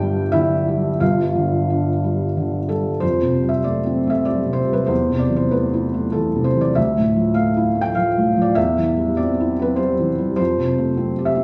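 Wistful and intimate, this short neoclassical minimalist piano passage is cut from a longer piece and moves in a rubato 3/4 at roughly 86-102 BPM, tuned to A4 = 439 Hz. A felt-muted upright piano plays solo throughout, spanning G1 to G5, its tone soft and mellow and placed up front. It opens on G5 before settling into a chord sequence at 3.0 seconds: Fadd9, Am/E, Dmadd9 and C/E, returning to Fadd9 at 10.4 seconds. A moderate plate reverb with a 2.8-second tail lends the studio sound a gentle halo around the hushed instrument. The fragment runs to 11.4 seconds.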